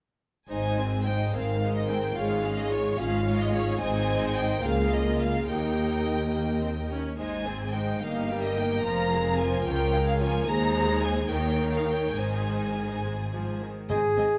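Lilting in a straight 6/8, this graceful, cheerful classical-period movement for symphony orchestra sets a lush, vibrato-rich first violin melody over soft sul tasto second violins, focused violas, distant French horn chords, a clear, intense double bass line and expressive cellos in the background, the strings all bowed on a moderately reverberant scoring stage, until a close-miked clarinet, an airy, hollow flute and dry calf-headed timpani enter at 13.9 seconds before the excerpt is cut.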